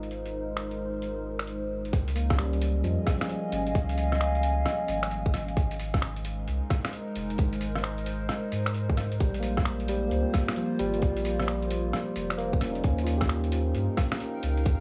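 A swung 4/4 pulse at 132 BPM, with 64% swing on the sixteenths, drives this nocturnal, ghostly future garage piece, cut from a longer track. A lo-fi, sampler-style kit of finger snaps, hi-hat and rim click sounds pitched down, muffled and overdriven from the start, and a tight electronic kick joins up front at 1.9 seconds, re-recorded in a large room. Underneath, a deep, round sine sub bass sits prominently in the mix, while a warbling, detuned tape-like pad holds nostalgic sustained chords with a slow attack, chorus, phaser, built-in reverb and sidechain pumping. A barky, clean tine electric piano, played through a combo amp with analog delay and the same pumping, accompanies the harmony but drops out from 5.6 to 9.2 seconds. The chords move from Ab6 to Dbmaj7, back to Ab6, then Bb5 and Eb7, all wrapped in a cassette-tape sound with a low-pass filter, light reverb and studio ambience.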